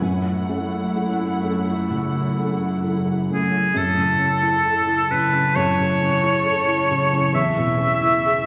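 Moving and bittersweet, this rubato cinematic film-score fragment opens with veiled con sordino violins carrying a brief melody over an intimate thick-felt upright piano, lush muted violas and smooth-topped cellos, then at 3.3 s a bright, up-front solo oboe takes a second line, joined at 3.8 s by a pure straight-toned flute, a distant mellow clarinet and a faint, dry triangle, within a reverberant scoring-stage space dusted with vinyl crackle.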